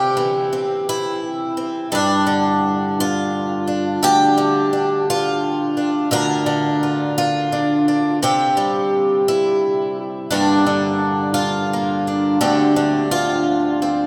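Intimate and haunting, this folk excerpt for solo fingerstyle guitar moves at an unhurried 57 BPM in a lilting 6/8, with a picked twelve-string acoustic guitar carrying the whole 14.1 seconds alone. Its bright, boxy tone shimmers with octave-doubled strings and catches a touch of finger squeak, sitting up front while a swing feel colours the picking. A wet cathedral reverb places it in a vast, echoing space as the harmony drifts from C through G5, Bb/D and Gm before settling on Dm7.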